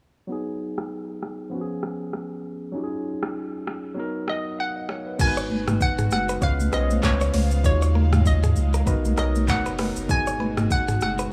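An afrobeats groove at 98 BPM in 4/4, with a lilting swing on the sixteenths. The mood is hypnotic and mellow, in G# dorian, and this is cut from a longer piece. A worn, slightly out-of-tune tine electric piano opens the passage, playing through a combo amp over a filter sweep and cycling G#m7, C#7, D#m11 and Bmaj7. The electronic, up-front drum kit arrives at 0.8 seconds, with a deep kick, metallic hats, handclaps, rim clicks, shaker, toms and a crash. A hollow, bouncy square-wave pluck carries the melody from 4.3 seconds, detuned and coloured by chorus and tape echo. At 5.2 seconds the second section begins: a full sine-and-triangle sub bass with its octave anchors the low end, and very quiet, damped, high-tuned congas join in. Soon after come a bright, compressed, direct-recorded clean guitar riff with tape echo and a soft, warbling, breathy pad with chorus sitting in the background, all heard in a dry, small room through a low-pass filter.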